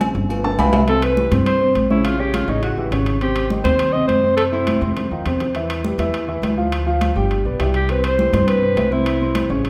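A brisk, straight 4/4 pulse at 205 BPM drives this sunny, sophisticated Afro-Cuban jazz cut from a longer piece in C major, where woody pizzicato upright bass, a natural-sounding warm grand piano, bright thin-skinned congas and ringing timbales with agogo bells carry the groove, drum fills arrive at 0.4 s and 4.7 s, and an intimate, breathy alto saxophone with light vibrato and scooped notes takes the melody from 0.9 s and again at 7.8 s, set in the wet reverb of a recital hall.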